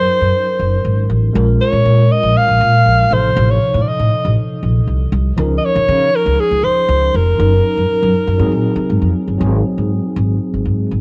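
A home cassette recording with light reverb and a touch of studio ambience gives this short clip from a longer piece a soft, slightly worn gloss. It is polished 1980s jazz-funk pop at 119 BPM in a straight 4/4, with an urban, glossy mood and tuning set to A4 = 439 Hz. A breathy alto saxophone carries the melody up front in a smooth pop style, with light vibrato and a smooth top, until it drops out at 9.2 seconds. Beneath it, a mellow tine electric piano plays clean accompaniment through lush chorus and its own built-in speakers. The acoustic upright bass is plucked pizzicato on steel strings and sits up front with a woody, growly tone. Over the opening section the harmony moves from Gb6 and Bbm7 through F7/A and Db69, back to Gb6 and on to Ab7. Piano and bass both keep going through the brief closing section that begins at 9.4 seconds.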